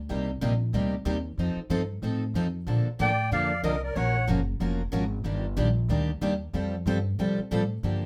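A swung 4/4 pulse drives this short cut from a longer acoustic string swing piece in the jazz manouche style, with a bittersweet yet virtuosic mood. Up front, a woody, thumpy upright bass with gut strings plays pizzicato, joined by two picked steel-string acoustic guitars, one a bright jumbo and the other a full-bodied dreadnought, filling out the accompaniment from start to finish. At 3.0 seconds a clarinet steps forward for a brief solo in jazz style, with vibrato, a subtone and a soft attack that give it a vintage feel, while a reedy musette accordion in shimmering wet tuning adds a second line beneath it until 4.3 seconds. The harmony moves through Cm7, F7 and Bbmaj7, then turns to Gbmaj7 and Ebmaj7 before settling on Fadd9. Light reverb places the ensemble in a modest space.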